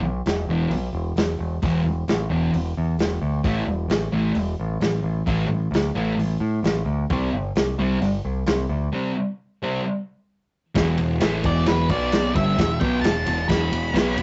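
Swaggering and menacing, this garage rock excerpt opens on a growling, overdriven picked bass, quickly joined by a punchy vintage drum kit with muffled, dark cymbals and a thick, double-tracked fuzz guitar riff in a straight 4/4. After a break at 8.9 seconds, the harmony moves from E5 to B5 and Em, and a shadowy octave-fuzz lead guitar enters up high at 11.5 seconds. The rough rehearsal-room sound carries saturation, light reverb and a capped top end.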